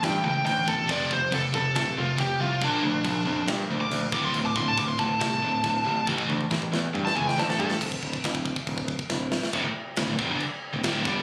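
A dark, distorted high-gain lead guitar, up front in the mix, carries a solo melody from the opening until 7.8 seconds, ranging from D4 to D6 with a digital delay trailing its picked notes. This dark, heavy metal passage in D minor runs at 139 BPM in 4/4, held in a half-time feel while the solo moves over A, F5, Bb, D5 and A5 chords. Beneath it, a double-tracked, scooped rhythm guitar, bright and picked, drives the riff. A growling picked bass, overdriven and heard both direct and amped, anchors the low end. The tight metal drum kit, mid-forward with a big-room sound, has a medium-tuned snare, a tight kick, bright china and crash cymbals, and toms, and it plays drum fills before the solo ends and again just before the close on D minor at 9.5 seconds. Cut from a longer piece and captured on a phone in a room with studio ambience and reverb, the recording has a raw, roomy character.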